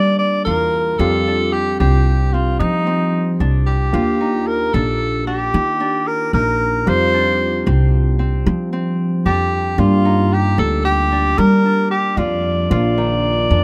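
Driving and bright, this short progressive instrumental in 11/8 sets a subtoned, scoop-phrased tenor saxophone solo up front, distant and roomy, over a woody, thumpy pizzicato upright bass, a barky tine electric piano heard clean through a combo amp, and a fingerpicked Celtic harp ringing out arpeggios, all in a rough home demo mix with light reverb.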